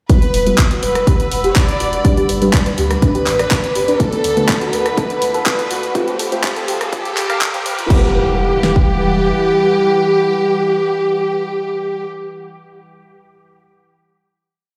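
Dreamy and expansive, this short progressive house piece moves at 123 BPM in E minor, building steadily until about 7.9 seconds before settling on a final held chord. A punchy four-on-the-floor kick and fat snare sit up front, with hi-hat, handclaps, rim clicks and a crash filling out the programmed backbeat, while a saturated sub bass plays off-beat notes beneath. Over the chords, from Emadd9 through G, D6 and Fadd9 and back to Emadd9, a soft octave-layered synth lead carries a repeating riff with vibrato and dub echo, doubled in unison by a smooth, rich studio violin section. A round, dark pluck runs a 32-step arpeggio in the background until about 8.1 seconds, a warbling, vintage chord stab adds held chords with syncopated pushes, and an evolving, detuned wavetable pad sustains the harmony. A glassy high B5 drifts quietly in the background, a riser from 1.8 seconds leads into the final chord, filter sweeps open up the synth parts through the build, and sidechain pumping shapes most of the melodic parts. 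The whole piece sounds as though played through a big system in a bare stone room, with a concert hall reverb of 2.3 seconds adding spacious depth.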